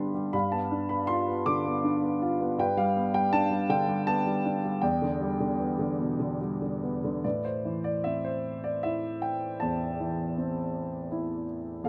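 Classical solo piano in A minor, melancholic and dark, unfolds in a rubato 3/4 at around 71-85 BPM as a warm baby grand, up front with long sustain and close, detailed presence in light reverb, moves through G7, G and Em7 before settling on Amadd9 at 7.2 seconds in this brief lyrical fragment cut from a longer piece.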